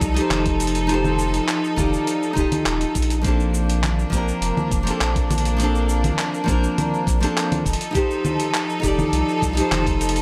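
A bright, fingerpicked nylon-string guitar with tape echo sits up front from the first moment of this relaxed, smooth sunset chillout excerpt at 102 BPM in Bb major, joined by distant, intense bowed symphonic strings with light vibrato, a round, deep analog bass with tube saturation, a dusty, compressed sampler-style kit of congas, handclaps, hi-hat and shaker, and a knocking electronic kick, moving between F7 and Bbmaj7 in a light digital ambience with a dry, gritty hardware sound.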